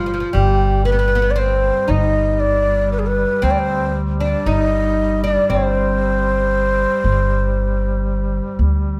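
A breathy ney carries the melody up front, its straight, tongued tone soft at the top, in a longing, melancholic Arabic maqam piece in G hijaz at 116 BPM in 10/8, tuned to A4 = 438 Hz. Beneath it, a bright oud with woody double strings plucks a second line, a mellow duduk holds a G drone with vibrato and scooped notes, and an up-front upright bass plays warm pizzicato. Light reverb surrounds this short excerpt from a longer piece, with the ney stopping at 8.6 seconds and the oud at 8.5 seconds while the bass and drone sound to 9.0 seconds.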